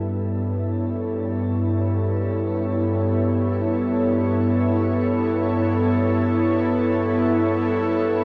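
A breathy, detuned pad with a noise layer and ring modulation sustains a single Gadd9 chord alone from G2 to C#5 for 8.2 seconds of free-time ambient music, its slow attack and long release softened by chorus and delay and bathed in an 8.1-second shimmer reverb within a dark, warm production, creating a reflective, serene fragment cut from a longer piece.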